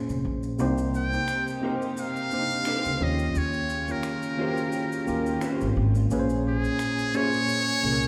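A wet, church-like reverb surrounds this smooth, introspective neo-soul excerpt at 87 BPM in Bb dorian, where a worn, slightly out-of-tune tine electric piano sits up front with a woody pizzicato upright bass and soft maracas and finger snaps, moving through Bbm9, Cm7 and Eb9 with a gentle 16th-note swing. A distant, reedy string section adds dark bowed chords from 0.6 s, and a buzzy, breathy trumpet in a metal mute carries the jazz-styled melody from 1.0 s with light vibrato. In the background, a slightly broken-up, lo-fi electric guitar picks a second line until 7.3 s, while the harmony returns to Bbm9 at 6.1 s for a closing passage.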